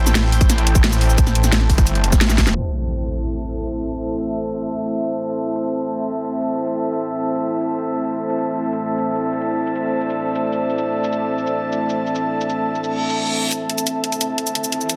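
Dark and futuristic, this technical drum and bass excerpt at 175 BPM in A minor opens on a drop where a snarling, growling distorted saw bass and a tight overdriven electronic kick hit hard until 2.5 s, capped by a drum fill and a band accent, under a cracking snare and bright hats from the overdriven kit. A deep, moody ambient pad with wave-folded, ring-modulated sustained chords, chorus and sidechain pumping sits alongside an airy, breathy pad with a soft noise layer, both holding through a long filter sweep that begins with an impact at 2.6 s. A reverse cymbal leads into a closing build-up with a riser from 13.5 s, all within a dense, heavily limited modern master with light digital ambience.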